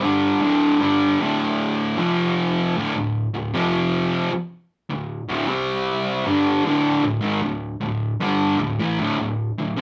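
In a straight four-four feel, this brooding, ominous metal excerpt features a lone fuzz guitar, electric, picked and double-tracked, sitting up front with a warm, distorted tone that spans from low D2 to C4. It grinds through D5 and F5 power chords, moving into a second section at 2.8 seconds that adds a C5 before returning to D5. A light reverb gives it the feel of a band playing live in one room.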